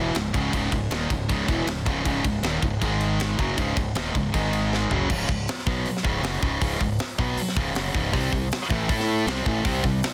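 Relentless and dark, this short heavy metal excerpt drives forward at 158 BPM in a straight 4/4, set in C# harmonic minor. A bright, high-gain guitar with heavy distortion sits up front playing the riff throughout, joined by a sludgy overdriven guitar with a warmer tone that drops out at 5.1 seconds and returns at 8.1 seconds. Underneath, a fingered electric bass adds growly, punchy fuzz, while a tight acoustic drum kit with bright cymbals, a high-tuned snare and a clipped kick pushes hard from the front of the mix. A drum fill at 4.7 seconds leads from the opening section into the second, where the harmony moves through power chords on C#, C and A. The sound is dry and close, with a dense, heavily limited modern master.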